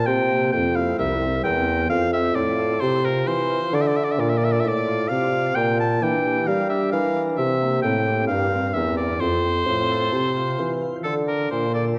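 A clear oboe with light vibrato and a soft attack carries the solemn, introspective melody up front in this baroque-style sonata movement, cut from a longer piece and moving at a slow 66 BPM in 4/4 and F major. A mellow bassoon holds the bass line, also up front with light vibrato, while a chamber organ's bright flute stops, with their chiff, fill in the continuo beneath. The chords move from C7 through F, Dm and Gm/Bb, and the dark production sits in a recital hall with a reverb that lingers about 1.7 seconds.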